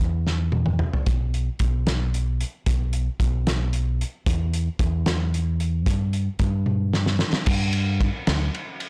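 A blown-out, overdriven recording with light reverb carries this bright, wistful math rock and midwest emo fragment in 6/8 at 75 BPM in G major, where a loose indie drum kit, acoustic and dark with a fat snare, punchy kick and rolled-off top, opens with a fill at 0.3 seconds and plays another at 6.7 seconds, while an up-front, round, deep dub fingered electric bass sits low beneath it until 8.5 seconds.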